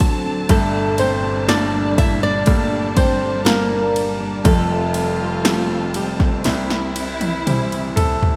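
An emotional, heartbroken pop ballad moves in a straight 4/4, heard here as a short cut from a longer piece. A clear, intimate grand piano sits up front as accompaniment, its action noise audible, while a lush studio string section holds sustained chords with vibrato and portamento, and a full-bodied jumbo steel-string acoustic guitar fingerpicks quiet arpeggios beneath them. From 0.5 seconds a fingerpicked flamenco guitar carries the melody, touched by subtle chorus, over chords moving from Gmadd9 to Fadd9 and on to C. An electronic deep house drum kit, overdriven and treated with gated reverb, drives the track with a deep kick, punchy snare, ride cymbal and toms, ending in a drum fill from 6.5 seconds. The bright 1980s-style digital production sets everything in a moderate plate reverb.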